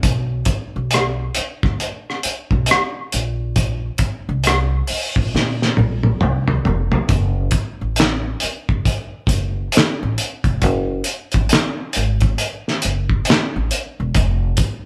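R&B with a neo-soul lean, this short excerpt drifts along at 68 BPM in 4/4 with a 16th-note swing, carrying an introspective, late-night mood. The band plays live together in one room with light reverb. A cloth-damped drum kit sits up front, thuddy and muffled with a gritty, saturated edge, a fat snare, a tight kick and a rolled-off top; handclaps, hi-hat, rim clicks and toms fill out the kit. Beneath it, a pizzicato upright bass with steel strings gives a woody, warm low end, moving between Fb1 and Bb2. The opening passage closes with a drum fill from 5.3 to 7.1 seconds, leading into a second section that runs to the end, where the bass stops at 14.5 seconds and the drums carry on briefly until 14.8 seconds.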